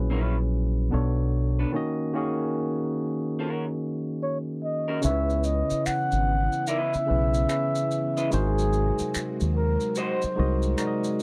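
A smooth, introspective neo-soul R&B passage opens with a barky, lightly overdriven tine electric piano and a deep, round, punchy fingered dub bass up front, joined almost at once by a twangy, slightly broken-up electric guitar through a small old amp, all in a swung, dry, close 1970s-style studio sound. After a break from 1.7 seconds, a dark, breathy flugelhorn enters at 4.2 seconds with a whispered, intimate jazz solo full of scooped notes. At 5.0 seconds a silky, mellow string machine with ensemble chorus settles into the background, alongside compressed, saturated maracas and finger snaps.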